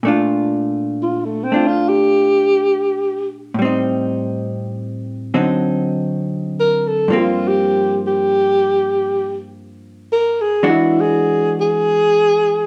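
A clean, dark electric hollow-body guitar opens this romantic jazz ballad, picked and compressed, setting a slow swung accompaniment up front in the mix. At 1.0 seconds a breathy alto saxophone enters to carry the melody as a solo, its soft attack, scooped notes and vibrato giving the line a mellow, whispered intimacy. The harmony moves from a Bbmaj7 through Am7b5 and D7b9 to Gm7 before arriving at an E9. The two players sound as if they are performing live together in one large studio, with a moderate reverb adding air around them. This intimate fragment of a longer piece runs to 12.7 seconds.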